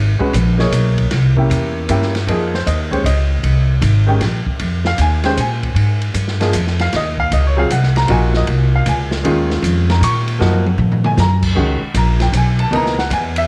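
Searching and hypnotic, this modal jazz excerpt swings in 3/4 at 155 BPM in F phrygian, with a woody pizzicato upright bass sitting up front as piano and drums join at 0.2 seconds. The clear baby grand supplies short-sustained accompaniment through chords such as Fm11 and Ebm11, while the open jazz kit, with its dark cymbals, boomy kick and rolled-off top, adds a fill around 10.4 seconds. Light reverb gives the trio a small-room ambience.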